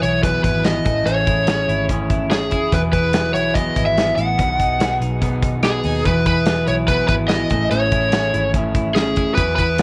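From the first moment this nostalgic, youthful slice of jangly indie pop has a bright, twangy twelve-string electric guitar spinning chorus-tinged arpeggios with tape echo over a slightly broken-up rhythm guitar, a round, foam-muted vintage fingered bass and a dark, smooth rock kit with a punchy kick, while an up-front overdriven lead guitar through a small cranked amp sings the melody with its own tape echo, all in a light small-room reverb across chords moving from Eadd9 through Amaj7 and B6.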